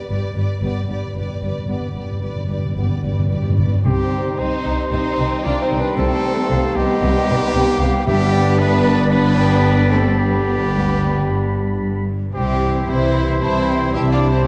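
Heroic and soaring, this cinematic adventure-film cue moves at 113 BPM in a straight 4/4, cut from a longer piece. A lush violin section carries the melody with soft-attack, expressive vibrato, while a second, darker and distant violin line sits very quietly alongside it, and smooth violas fill the background. Rich cellos and woody double basses anchor the bass, with a tight, very quiet trombone section holding chords, as hard-mallet timpani open with an articulate, close and dry fill through the first 3.8 seconds. At 3.9 seconds the harmony turns to C minor and the texture blooms: a horn section adds sustained chords, a mellow trumpet punctuates with stabs, and a clear, roomy clarinet and oboe trace background lines. An airy, hollow flute joins at 4.9 seconds, the timpani return briefly at 8.1 seconds as the harmony returns to G, and the chords then move to C. A moderate scoring-stage reverb gives the whole a dark, warm production.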